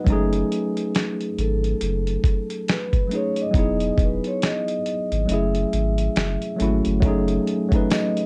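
A swung, gritty sampler-style beat with a thumpy kick and fat snare, its kick dropping out between 5.3 and 7.0 seconds, drives this reflective, nostalgic lo-fi hip hop fragment, where a worn, slightly out-of-tune tine electric piano sits up front over deep sine-and-triangle sub bass, a ringing soft-mallet vibraphone carries the melody from 1.4 seconds, and a faint, jingly tambourine appears at 7.9 seconds, the whole recording wrapped in a small room and cassette tape haze.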